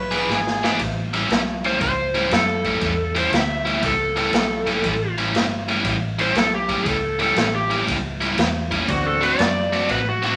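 An overdriven slide guitar played with fingerpicks carries a bright, up-front solo from 1.7 s in this swaggering, soulful electric blues shuffle at 119 BPM in A mixolydian, swung in 4/4. Beneath it, a biting overdriven picked guitar riff, a dark, round, foam-muted vintage bass and a raw garage drum kit with a punchy kick, gritty saturation and a rolled-off top drive the groove after a brief drum fill. A clear harmonica with tongue slaps and scooped notes sounds only in the opening 0.7 s, and a horn section adds smooth, vibrato-tinged stabs at 8.9 s over the move to D7, set in a moderate studio ambience in this cut from a longer piece.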